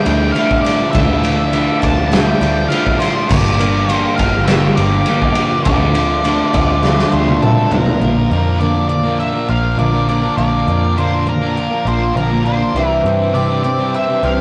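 Shoegaze and dream pop rock in a melancholic, dreamy haze, where a dark octave-fuzz lead guitar sings its melody over a clean, hollow-bodied semi-hollow electric riff, a thick fuzz guitar riff sitting in the background, woody, shimmering twelve-string acoustic arpeggios, a round, foam-muted vintage bass and a very quiet, warbling detuned sawtooth pad, while a gritty, up-front garage drum kit in a bright stone room drives the first section, plays a fill from 6.8 seconds and drops out at 8.0 seconds, leaving the guitars, bass and pad ringing on in a rough rehearsal-room sound with tube saturation.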